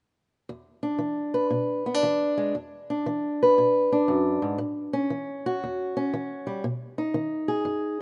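Laid-back and soulful, this short excerpt of acoustic country blues moves at 118 BPM with a swung feel in E mixolydian, tuned to A4 = 441 Hz. A single fingerpicked old ladder-braced acoustic guitar plays alone and up front from 0.5 to 8.0 seconds, its dark, boxy tone ranging from low E2 up to B4 as it moves from E7 to A at 4.6 seconds and on to B. Light small-room reverb and a rough, dull-topped home demo sound give it an intimate, unpolished character.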